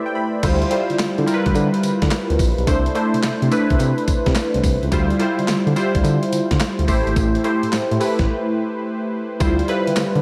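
New jack swing R&B with a slick, confident mood, moving at 107 BPM in 4/4 with a swung sixteenth-note feel in D dorian, taken from a longer piece. Up-front analog keys open the passage alone with a short fill before the rest of the band enters at 0.4 seconds, their round, detuned sawtooth and triangle tones colored by chorus, phaser, wave-folding and a filter sweep. Underneath, a smooth synth bass holds sustained, nasal notes with vibrato, while a gritty, compressed sampler-style drum kit sits up front with a thumpy kick, a medium-tuned snare, handclaps, hi-hat, tambourine and crash cymbal, re-recorded in a large room. A very quiet metallic cowbell adds a faint acoustic accent in the background. The harmony cycles through Dm11, C69 and Am7, with a break between 8.3 and 9.4 seconds before returning to Dm11, all under light reverb.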